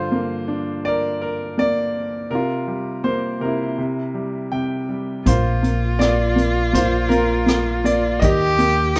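An acoustic folk-pop ballad at 81 BPM with a tender, intimate mood, this excerpt opens on a clear, smooth concert grand piano carrying the melody over Gm7 and C7 chords, its vintage tone and deep bass sitting up front, and the piano plays a fill from 4.2 s. At 5.3 s the harmony moves to Bbadd9 as a rich, nasal bowed cello joins with expressive vibrato and portamento, alongside a woody, thumpy pizzicato upright bass on gut strings and a distant, roomy acoustic drum kit played with bundle sticks, its punchy kick, hi-hat and rim click sitting lower in the mix. Light reverb surrounds the performance before it settles on Eb.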